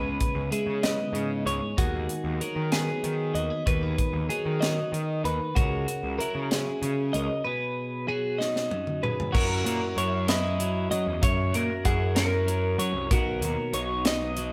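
Intricate and bright, this math rock and midwest emo excerpt moves at 64 BPM in a straight 6/8 in B major, as two clean, compressed twelve-string electric guitars (one warm accompaniment, one twangy arpeggios) ring over a round, punchy fuzz bass and a crisp, airy fusion kit with a high-tuned snare and tight kick, all in a moderate stone room, until a drum fill at 8.4 seconds ushers in a slightly broken-up, lo-fi electric guitar melody from 9.3 seconds as the chords move from C#m7 through F#7 to a closing Bmaj7.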